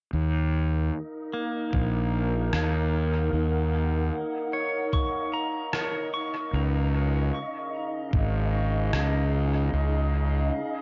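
Ambient dub with a meditative, deep mood, heard as a short cut from a longer piece that settles on an Ebm7 chord before moving to Db near 6.5 seconds. A fuzz-laden fingered electric bass opens almost at once, round and overdriven, sitting up front and carrying the low end. A warbly, tape-like pad of sustained chords arrives at 1.0 seconds, nostalgic and lo-fi with detuned chorus and its own reverb, joined by an airy, breathy tuned-noise texture that hovers dark and wind-like in the background. A twangy pedal steel guitar plays arpeggios with slide and volume swells, its notes trailing into dub echo, while a muffled, thumpy sampler kick sits up front and a compressed rim click throws its own echoes into the space. The mix has a light digital ambience and a soft, dulled top end, giving the whole piece a hazy, vintage tint.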